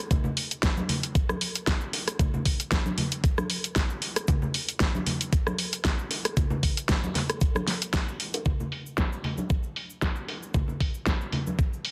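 Nu-disco groove at 115 BPM in 4/4 with a 16th-note swing, groovy and sleek in mood, taken from a longer piece. A thumpy, overdriven electronic kick sits up front alongside a layered pop drum kit with a fat snare, rim click and mellow, low-pass filtered hi-hats, while ringing congas, cabasa and bongos played with soft hands add an acoustic, small-room texture. All three parts enter together at 0.1 s and run until just before the 12-second mark, the arrangement shifts into a new section at 8.5 s, and the mix carries light reverb under a dense, heavily limited modern master.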